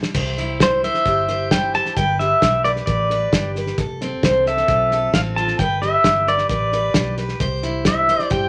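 At a steady 132 BPM in straight 4/4, a cloth-damped drum kit thuds along with a tight kick, a medium-tuned snare, hi-hat and dark crash cymbal, its rolled-off top sitting up front in a wet small room. This short honky-tonk and classic country passage in C major has a nostalgic, down-home mood, moving through C, G, F, G and back to C by 7.4 seconds. A vintage muted electric bass, fingered and amped, gives a round, dark, foam-muted low end from 0.1 seconds, while a picked steel-string dreadnought acoustic guitar adds bright accompaniment with audible finger squeak. The pedal steel guitar carries the melody from 0.6 seconds, played with fingerpicks and slide and heard bright, clean, compressed and twangy, with volume swells, sitting up front in the mix. It is cut from a longer piece.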